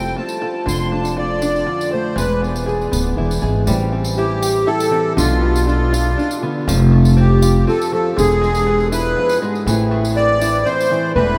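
An accordion with a reedy, sweet tremolo tuning carries the melody up front from the very start, featured as a solo through the first 3.7 seconds. Beneath it are fingerpicked ladder-braced acoustic guitar with old, dark strings, plunky open-back banjo arpeggios and a thumpy pizzicato upright bass on gut strings, and a jingly tambourine joins at 0.1 seconds. This haunting, melancholic acoustic folk piece in 3/4 sets the accordion's boxy small-room tone against a huge, wet reverb that places the small band in a vast, echoing space.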